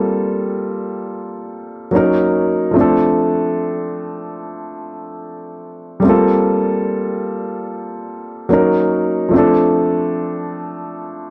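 Late-night and smooth, this short slice of slow R&B in G minor at 73 BPM features a solo upright piano with a woody, intimate tone, audible action noise and a touch of slapback echo, sitting up front in a dry, close 1970s-style studio sound with light reverb as it swings through Gm11, Ebm7 and Dm7 chords over 11.3 seconds.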